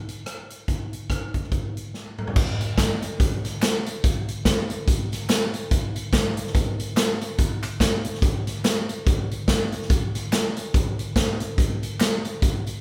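A swinging big-band drum kit opens this soulful, uplifting gospel cut at 143 BPM in 4/4, its punchy kick, medium-tuned snare, rim clicks, hi-hat, toms and crash cymbal sitting up front with a natural, big-room sound. After a drum fill at 1.9 seconds, tambourine and handclaps join at 2.4 seconds, adding an egg shaker and group handclaps from a small room in the background. The band plays live in one room under light reverb, and the piece is cut from a longer performance.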